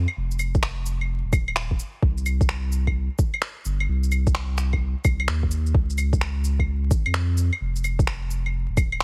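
Heavily compressed with a radio-like squeeze and a bed of vinyl crackle, this dry future garage excerpt sits close and intimate, carrying a wistful, melancholic mood. A deep, round sine sub bass opens at the very start, sustained notes arriving with a fast attack and pumping against a sidechain, sitting up front in the mix. Moments later, at 0.1 seconds, a cluster of electronic claves, cabasa, shaker and finger snaps comes in, overdriven and tucked back in a small room ambience, shuffled by a swung sixteenth-note feel. A soft electronic kick drum joins at 0.5 seconds, overdriven and placed forward, giving the groove its muted thump in four. The whole cut stays in a single section, bass and percussion holding their wistful melancholy until it ends at 9.0 seconds.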